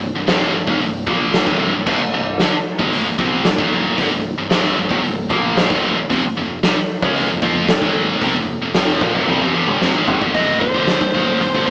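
Aggressive and heavy, this hard rock excerpt in C minor drives at 113 BPM, with a scooped, high-gain double-tracked guitar riff moving from Cm to F5 over a growling, overdriven picked bass and a raw garage drum kit with a punchy kick, gritty saturation and a rolled-off top. A drum fill from 9.3 seconds sets up the arrival at 10.3 seconds of a nasal lead guitar through a parked wah, as the chords return to Cm. The band sounds like it is playing live in one room, with light reverb and a small-speaker character.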